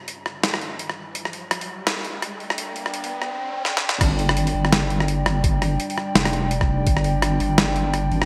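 A swung, half-time groove in 4/4 drives this tense, spacious drum and bass passage, cut from a longer piece. It opens on a build-up: a dark analog pad holds sustained, detuned chords with a nasal, moody edge and a pumping sidechain, while its filter sweeps and an electronic riser climbs in the background. A boom bap sampler-style kit sits up front from the start, its gritty, pitched-down snare, rim click, hi-hat and crash thinned by high-pass filtering and wrapped in gated reverb, and a short drum fill leads into the drop at 4.0 seconds. There a deep, soft wobble bass enters, rounded with chorus and tube saturation, alongside a thumpy, tape-warm electronic kick that plays until 6.9 seconds. The production is bright and 1980s-flavoured, set in a lush hall reverb that gives the whole passage a roomy, shadowy feel.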